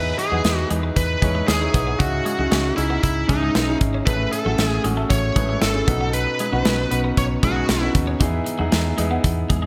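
A bluesy, overdriven lead guitar carries the melody up front from the start, with delay on its gritty tone, over a clear baby grand piano and a round, foam-muted fingered electric bass, in a nostalgic, glossy 1980s-style pop excerpt in E major at 116 BPM. At 0.2 seconds a polished modern drum kit with gated reverb, a tight kick and a medium-tuned snare joins, while a compressed twelve-string electric guitar with analog chorus plays a riff in the background. The lead drops out at 7.9 seconds as the chords move from Emaj7 through C#madd9, Amaj7 and Badd9 back to Emaj7, all framed by bright digital production and a plate reverb.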